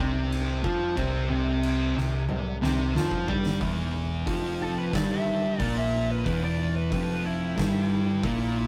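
A straight 4/4 pulse at 91 BPM drives this brooding, ominous stoner and doom metal excerpt, moving from a C5 power chord to E minor. An up-front fuzz guitar riff sits over a darker second fuzz guitar in the background and a very quiet, bright double-tracked one that drops out at 3.6 seconds, while a round, punchy picked bass growls with overdrive beneath an oversized, gritty low-tuned kit whose fat snare, punchy kick and dark cymbals fill a pumping stone room and roll into a fill at 2.3 seconds. From 4.6 seconds a compressed wah-drenched fuzz lead guitar takes the solo, all captured in a rough rehearsal-room sound with moderate reverb.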